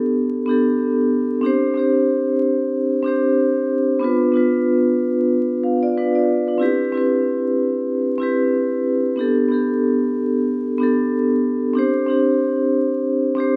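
Gritty and moody, this hip hop fragment swings lazily on its sixteenths as a lone vibraphone, played with soft mallets, sits up front with a mellow, ringing tone and a slow motor vibrato, ranging from B3 to F5. Its airy chords drift through Gadd9, Csus2, Bdim and Cmaj9 before circling back, shaped by high- and low-pass filtering. A moderate plate reverb and a layer of vinyl crackle lend the short passage a dusty, nocturnal atmosphere.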